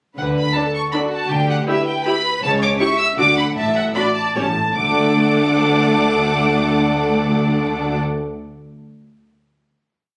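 A warm, expressive violin section carries the melody with vibrato and portamento over a lush second violin counter-melody, rich after-beat viola chords, focused cello bass on the beats and a smooth-topped double bass doubling it, in this spirited, graceful classical-period string orchestra movement in D major and 3/4 at 145-161 BPM, which slows from 1.9 to 4.8 seconds before a final D chord, captured on a phone in a large room with club reverb and compression.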